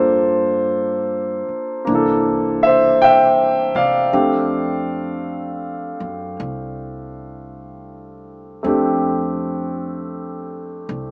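Tender and intimate, this short jazz ballad fragment is cut from a longer piece and moves at an unhurried pace with a gentle swing. A grand piano with a smooth, vintage tone and long sustain sits up front, supplying the accompaniment across the full 11.1 seconds. Beneath it, a pizzicato upright bass with a woody, growly, thumpy character holds the low end, set well back in the balance. The harmony moves from Gm9 to C13 at 1.9 seconds and settles on F6 at 4.1 seconds. A moderate plate reverb adds a lingering tail, while the overall sound has the character of a small speaker.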